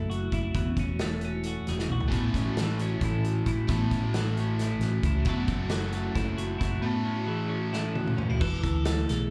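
Heard as a live gig through the venue's PA, the recording carries a light club reverb around a wistful, bright slice of math rock and midwest emo, cut from a longer piece and moving in a straight 7/8. A clean, twangy twelve-string electric guitar sits up front with spring reverb and slapback echo, picking out accompaniment over chords that drift from F#m7 through A6 and Amaj7 before settling on E7sus4. A vibraphone played with soft mallets spins airy, ringing arpeggios with a medium motor vibrato, dressed in plate reverb and its own slapback echo. Underneath, a hollow-body short-scale electric bass played with the fingers gives a round, punchy low end, while a loose indie drum kit, distant and roomy with dark cymbals and a tight kick, adds fills at 1.8 and 7.7 seconds. At 2.1 seconds a biting, double-tracked overdriven guitar enters with a riff, dropping out at 8.4 seconds as the chord shifts.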